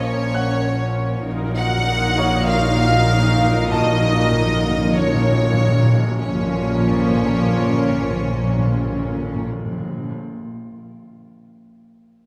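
Set in a moderate concert-hall reverb, this tense, uneasy suspense film cue in Bb minor moves at 98 BPM in 4/4, cut from a longer piece. A clear violin section carries the floating, sul tasto melody over a second violin line, rich violas, and a dark cello and warm double bass bass held on Bb, while very quiet, mellow French horns and trombones and a glassy FM pad sustain the chords. An intimate, boxy grand piano adds texture in the background until 6.2 s, and hard-mallet timpani enter at 1.3 s with a fill as the harmony shifts from Bbm to Ebmadd9/Bb, settling on Bbmadd9 at 6.2 s.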